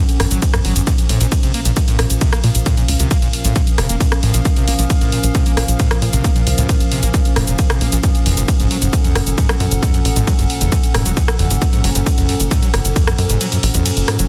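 An overdriven, squelchy acid bass riff, gritty with a resonant filter sweep and sitting in the background, opens this short cut of driving, dark peak-time techno at 134 BPM in Bb harmonic minor, joined at once by a warbling, lo-fi tape-like pad and an eerie, nasal FM drone, both carrying chorus and built-in reverb and pumping against the sidechain. A tight, punchy sequencer bass with a plucky filter and a heavy overdriven kick arrive within the first 0.4 seconds, alongside an overdriven kit of hi-hat, ride, rim click and shaker in a small room. The chords move between Gbm and Bbm under a dense, heavily limited master, and the kick falls away at 13.4 seconds.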